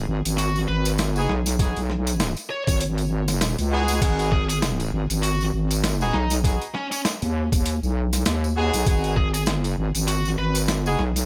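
A heavy, mellow wobble bass with chorus opens this funky glitch hop fragment in G# minor at 99 BPM with a swung 16th feel. It is soon joined by an overdriven, pitched-down sampler drum kit with crash, hi-hat and high-tuned snare, a jingly, close tambourine, and a distorted high-gain lead guitar that carries the melody through digital delay and 12-bit sampler grit. Bright, punchy horn stabs pump under sidechain, and a thumpy, up-front electronic kick arrives at 1.6 s and drops out from 2.8 to 4.0 s, in a dry mix.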